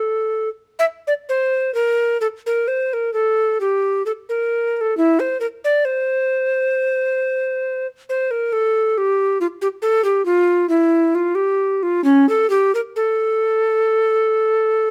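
Closely miked with light reverb, this solemn, flowing excerpt from a baroque-style classical fantasia features a mellow tenor recorder playing alone and up front throughout its 14.9 seconds, its woody, airy tone marked by vibrato and a crisp, chiffy attack as it moves freely in rubato around 67 BPM in 4/4 across a range from Db4 to E5.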